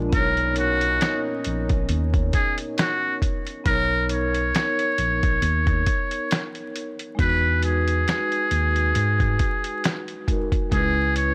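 Lo-fi hip hop in B major at 68 BPM, this mellow, cosy cut from a longer piece moves with a lazy swing on the sixteenths and drifts through Bmaj9, Emaj9 and C#m7. A buzzy, thin trumpet with a metal mute carries the melody up front, its soft attack and light vibrato given a jazz-style lilt and shaded by a low-pass filter and analog delay. Beneath it, a compressed, pitched-down sampler-style kit thumps along with kick, medium-tuned snare, hi-hat and finger snaps, while a clean tine electric piano, heard through its built-in speakers, supplies the bass line. A soft-mallet vibraphone rings with slow motor vibrato and an airy, metallic shimmer as it fills out the harmony. A detuned, nostalgic pad with chorus and its own reverb sits in the background for the opening until 3.6 seconds, just before the second section begins at 3.7 seconds. The whole track is dry and gritty, coloured by transformer saturation and a bed of vinyl crackle.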